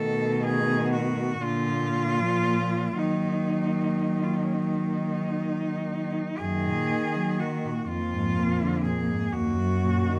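In a rubato 6/8 at roughly 33-41 BPM, this elegiac, yearning classical passage for cello ensemble in Eb minor places a clear, smooth cello melody up front over a warm second cello in the background, a soft, airy sul tasto cello accompaniment with light vibrato, and a rich, focused bowed cello bass, captured with close, detailed microphones and little reverb as the harmony moves from B7 through Bb to Ebm and then to a second section at 6.4 s that returns to Ebm.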